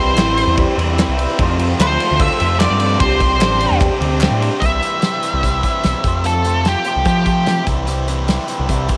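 This cut from a longer indie rock piece has an echo-heavy sound with moderate spring reverb, a jangly, upbeat mood and a straight 4/4 feel. Up front, an octave-fuzz lead guitar with a dark, distorted edge and tape echo carries the melody until 7.6 seconds, alongside a growling, overdriven picked bass. Two riffing guitars sit beneath it: a bright, compressed fuzz guitar that runs through the whole passage, and a lo-fi electric guitar through a small old amp, slightly broken-up with chorus and tape echo, tucked in the background until the second section begins at 4.6 seconds. A loose indie drum kit with dark cymbals and a tight kick drives things along, while crisp, very quiet group handclaps and a tinkling FM synth bell add sparkle early on. A deep, moody analog pad holds sustained chords beneath the first section as the harmony moves between C, F and their suspended and added-note colours.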